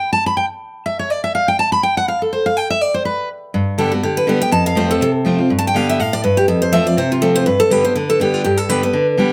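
A brisk, swung eighth-note feel in 4/4 drives this lively, virtuosic bluegrass fragment, taken from a longer piece. A picked steel-string dreadnought guitar carries the accompaniment throughout, sounding bright and full-bodied up front, and it plays alone for the opening 3.5 seconds over an unharmonized passage. As the second section begins, the harmony settles into a back-and-forth between G and F. A second picked dreadnought enters with the melody at 3.8 seconds, its fresh strings giving a warm tone set in plate reverb, also placed close to the listener. A moderate studio room surrounds the pair with a short, natural ambience.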